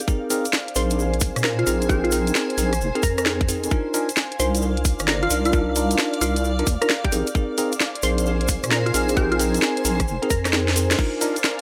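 Skippy and late-night, this excerpt of swung two-step UK garage pairs a tight, overdriven kick and cracking snare up front with a grainy egg shaker and a cloudy, pumping granular pad, while bell-like electric piano stabs with delay, a glassy, crystalline pluck melody with chorus and a deep, wobbling sidechained bass ride over Bb9sus4 and Cm11 chords, the kick dropping out at 10.5 seconds for a drum fill before a silky string machine enters at 11.2 seconds.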